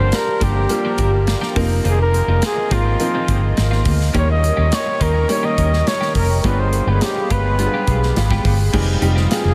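Polished 1980s jazz-funk pop, slick and bittersweet, moving in a straight 4/4 through a brief cut from a longer piece. A breathy, whispered flugelhorn carries the melody as an intimate solo voice, with a soft attack, light vibrato, a smooth top and a touch of delay. Beneath it, a clear grand piano with short sustain plays the accompaniment through a lush chorus, while a hollow, flute-like pad with a slow attack holds sustained chords in the background from 0.1 seconds. A clean, picked electric guitar, compressed and scooped with analog chorus, repeats a riff behind the horn, and a round, foam-muted fingered electric bass sits dark and amped at the front of the mix. A tight, airy studio kit of kick, medium-tuned snare, hi-hat and crash drives the groove as the harmony passes from Gm7 through F7sus4, Eb7 and G7b9 to Fm9, all of it bathed in a huge, dreamy reverb.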